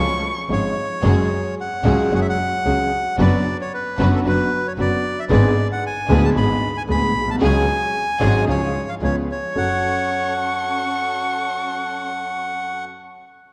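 Opening on a clear, woody upright piano, a bowed double bass played sul tasto with an airy tone, and lush symphonic string stabs in the background, this sultry, tense rubato tango brings in a reedy, up-front bandoneon melody at 0.5 seconds, while a solo violin with portamento and expressive vibrato returns as a second line at 9.6 seconds, shortly before the bass drops out, the whole dark production bathed in a wet concert hall reverb.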